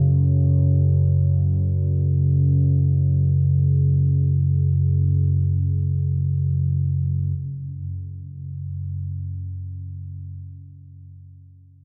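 Drifting in free time, this desolate, cavernous ambient fragment is carried by a single deep, ominous rumbling drone, dark and wave-folded with detuned sawtooth and triangle edges, swelling in on a slow attack and sustaining up front through its own reverb and delay from 0.0 until it fades on a long release at 10.4 seconds, all set in a light room.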